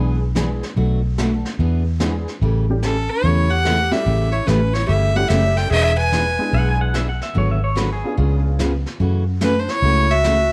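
A playful, cheerful western swing groove opens at once with a jangly, detuned honky-tonk upright piano, a full-bodied picked steel-string acoustic guitar with a touch of finger squeak, and a dark, round, foam-muted electric bass sitting up front, while a jazz brush drum kit enters at 0.4 seconds, distant and roomy with a boomy kick, brushed snare and hi-hat. At 2.8 seconds a clear, biting fiddle takes the melody close and up front, with light vibrato and an airy bow, shadowed in the background by a breathy, mellow clarinet playing a soft-attacked second line. Around 6.5 seconds a twangy pedal steel guitar slides in briefly with volume swells, and the fiddle and clarinet pause moments later. The piano drops out at 8.6 seconds, and the fiddle and clarinet return near the end as the harmony moves through rich seventh chords. Light reverb and small room ambience give the swung, cut-from-a-longer-piece passage an easy, dancehall charm.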